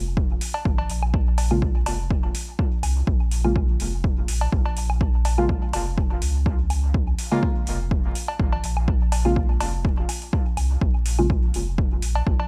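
A punchy, overdriven electronic kick drum sits up front in this hazy, cavernous dub techno cut, taken from a longer piece and riding a light swing in 4/4. Beneath it, a round, sustained sine sub bass holds the low end with sidechain pumping, while metallic, overdriven hi-hats sit lower in the mix. Dry, analog cowbell and woodblock add a tape-tinged percussive layer that also pumps and trails off into dub echo. From 1.5 s, a deep, mellow chord stab arrives, detuned and warbling through chorus and phaser, its dark, filter-swept tone decaying into dub echo until it stops at 11.3 s. The harmony rests on a single chord throughout, and the dry, close mix carries a steady bed of vinyl crackle.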